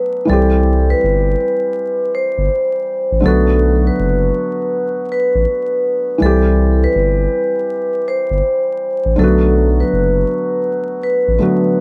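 Vinyl crackle and a small, moderately reverberant room frame a ringing vibraphone melody with a slow motor vibrato, played with medium mallets, over a soft, felt-muted upright piano accompaniment, both touched by plate reverb and sitting up front. A deep, saturated sub bass enters at 0.3 seconds with a fast attack and sustained tone, anchoring a swung hip hop groove that moves between Cmaj7 and Bm7. The mood is reflective and melancholic, with the intimate piano and metallic vibraphone carrying the section until 11.8 seconds.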